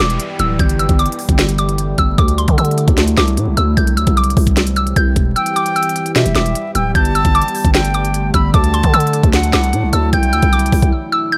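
Brooding, hard-hitting half-time trap at 151 BPM, where a woody, mallet-like synth pluck carries the melody with chorus, phaser and digital delay over a deep, dark ambient pad of sustained chords, a growling, buzzy 808-style bass and an up-front trap kit with knocking kick, sharp snare and crisp hats, as a background downlifter opens the first 2.2 seconds, an airy, reedy concert flute enters at 5.4 seconds as a delayed second line while the kick drops out briefly, and a short break at 10.9 seconds closes this dry, vinyl-crackled excerpt.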